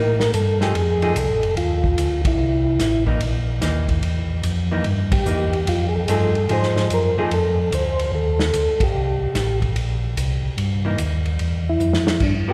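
Drenched in a cathedral-like reverb from a church or concert hall, this greasy, soulful soul jazz organ trio passage swings at 146 BPM, with a flute-like, percussive tonewheel organ carrying the melody through a slow rotary speaker over a round, up-front organ bass with key click, a dark, picked hollow-body guitar comping until 7.3 seconds and returning at 10.8, and a tight-kicked soul drum kit with dark cymbals that punches band accents and closes on a fill at 11.8 seconds, all moving over Gm13, F7#9 and C7#9 chords.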